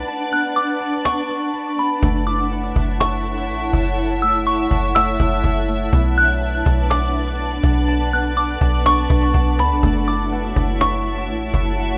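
A soft synth bell carries the melody high above this atmospheric cloud-rap excerpt, its pure, gentle FM tone colored by chorus, phaser and delay, entering at 0.3 seconds and ending at 11.3 seconds. Beneath it, a granular cloud pad holds sustained chords up front, blurred and evolving with its own built-in reverb, moving between Bm7 and F#m7 in F# minor. The music sits at 123 BPM in 4/4 with a half-time feel, and a round, deep 808-style bass anchors the low end with a dark, decaying sine tone. A thumb-plucked Celtic harp rings out arpeggios with delay in the background, alongside a twinkling granular texture that adds an octave-up shimmer. Snappy, close-miked cajon played with soft hands enters at 0.1 seconds with a break that runs to 2.0 seconds and carries on until 11.8 seconds, and the rough home-demo mix with little room reverb leaves the spacious, melancholic mood intact.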